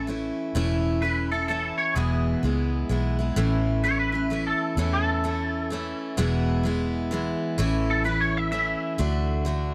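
Easygoing and nostalgic, this short honky-tonk and classic country waltz in A major sways at 128 BPM with a swung 3/4 lilt, as a twangy, clean electric guitar carries the melody through an ensemble chorus effect and takes a solo from 3.4 seconds, over a bright, full-bodied picked steel-string acoustic guitar up front and a dark, round, foam-muted vintage electric bass, all captured in a dry, gritty recording with little reverb, moving from A to E and on to D by 9.0 seconds.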